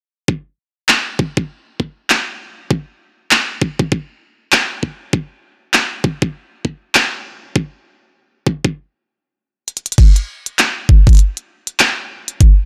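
A dry, gritty recording opens this short glitch hop cut, swaggering and funky at 99 BPM in 4/4 with a swung sixteenth-note feel. An overdriven, knocking electronic kick sits up front from 0.3 seconds, joined at 0.9 seconds by a glitchy kit of clicky hi-hats, handclaps and crash cymbal that carries a small-room character. The groove halts at 8.8 seconds, a drum fill arrives at 9.7 seconds, and a new section kicks in at 10.0 seconds.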